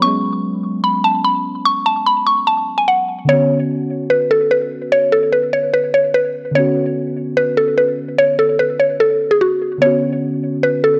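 A woody, round mallet-like synth pluck carries the melody up front in this melancholic, hard-hitting hip hop excerpt, its fast-attack, decaying notes softened by chorus, a low-pass filter and analog delay. Beneath it, muted felt-like synth keys play a dark, intimate accompaniment in a lower register, treated with chorus, phaser and a low-pass filter and sitting well behind the lead. Both parts play throughout the 11-second fragment, which moves from a C#7sus4 chord to Bmadd9 at 3.3 seconds before a brief closing passage from 9.8 seconds. The half-time feel gives the music a heavy, unhurried weight. The sound is dry and gritty with transformer saturation, lifted only by a light digital ambience.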